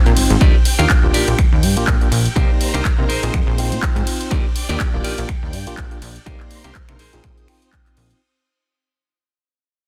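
Filtered disco house with a joyful, feel-good lift, this short cut from a longer piece rides a swung groove through Ebmaj7, Cm7 and Bb9sus4 chords while the whole track sits in a drop and fades out from 0.4 seconds. A punchy, funky plucky analog bass with a fast filter pluck sits up front alongside a punchy, tape-warm electronic kick that enters at 0.4 seconds, while a house kit of finger snaps, handclaps, hi-hat and ride adds a softly clipped snare and pumping hats and cymbals. A clean, dark picked electric guitar riff, a phased tine electric piano heard as if through built-in speakers, and a lush, vintage string machine with ensemble chorus in the background all pump against the kick in a dense, heavily limited mix with little reverb.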